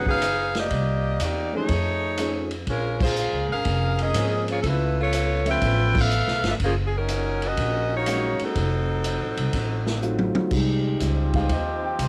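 A homey cassette recording with light reverb frames this short, brassy and sultry big band swing passage, cut from a longer piece. A bright, loose saxophone section carries the melody up front with jazz vibrato, touched by tape and plate reverb, while a concert grand piano with deep bass and long sustain accompanies through chords such as Cm9, Bbm7 and Gb6. A woody, dark upright bass is plucked up front beneath them, and an acoustic vintage kit with dark cymbals, a medium-tuned snare and a tight kick swings along, joining the band on accents at 2.9 and 5.9 seconds. A drum fill leads into a new section at 10.5 seconds, where the saxophones have dropped out and the piano takes a solo over an Fm9 chord. Behind it, a nasal, straight-muted trombone section holds sustained chords with light vibrato until the clip ends.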